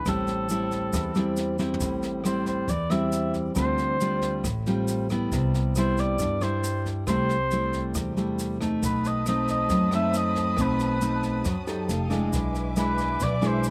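A straight 4/4 bossa nova groove at 137 BPM in A minor carries this smooth, wistful fragment, with a brushed drum kit with a boomy kick (adding a fill at 1.6 s) and a grainy, bright tube shaker under a woody, thumpy pizzicato upright bass, a full-bodied fingerpicked nylon-string guitar up front and a warm, vibrato-laden oboe melody touched with slapback echo, until a lush bowed violin section arrives with sustained chords at 8.8 s, the recording staying dry throughout.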